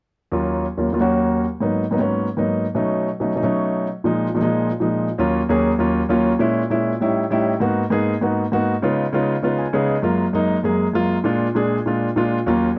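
A solo grand piano opens at 0.3 s, warm and up front, carrying a sophisticated, sultry jazz passage in Eb minor at a brisk 198 BPM in straight 4/4, cut from a longer piece. Its harmony moves through rich extended chords such as Ebm9, Abm9 and B9 before a Bb7sus4 leads into a second section built on Bbm7b5, A7#11, Db9 and Gbmaj7, with a short piano fill at 9.4 s. Light reverb and a dark production round out the sound, with the piano reaching from Eb2 up to Ab5.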